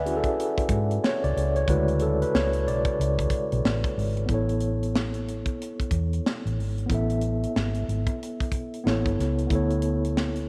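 A mellow tine electric piano takes a solo turn over a dark, round, foam-muted fingered electric bass from the start, with a tight funk drum kit's high-tuned snare, tight kick and hi-hat coming in at 0.1 seconds, in this soulful neo-soul R&B excerpt in A major at 92 BPM with a swung sixteenth-note feel, moving from Dmaj9#11 to Amaj9 at 4.3 seconds and closing on A9 and Dsus2, with all three parts up front in a light studio reverb.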